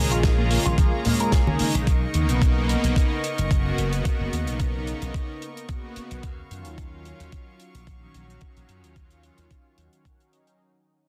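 A detuned sawtooth pad with chorus and digital delay opens this sleek, groovy nu-disco excerpt in Eb minor at 110 BPM. Bowed chamber strings hold earthy sustained chords beside it, both pumping against the beat, while a twangy, clean envelope-filtered guitar riff sits in the background until 1.8 seconds. Up front, a punchy, amped slap bass with tube saturation drives the low end, joined by a thumpy, tape-colored electronic kick and a dry 70s kit of hi-hat and medium-tuned snare, with a lightly swung sixteenth feel. Low-tuned, thin-skinned congas appear briefly in the background around 0.7 seconds. The harmony moves from Bbm7 to Bmaj9 and settles on Ebm9, under light reverb and a dense, heavily limited modern master, and the whole passage fades out across its 10.6 seconds.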